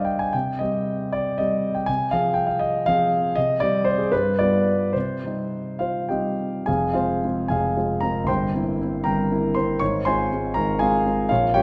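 A romantic classical character piece for solo piano, this brooding, bittersweet fragment, cut from a longer piece, moves in a rubato 6/8 at around 68-83 BPM in dotted quarters, starting in C minor before turning to F minor at 6.7 s. The concert grand sits up front with an intimate, vintage tone, deep bass and audible action noise, spanning F1 to Db6. It is set in a moderate concert hall reverb, with harmonies moving from Cm through Fm/C and G7 back to Cm, then on to Fm, C7/G and Fm/Ab.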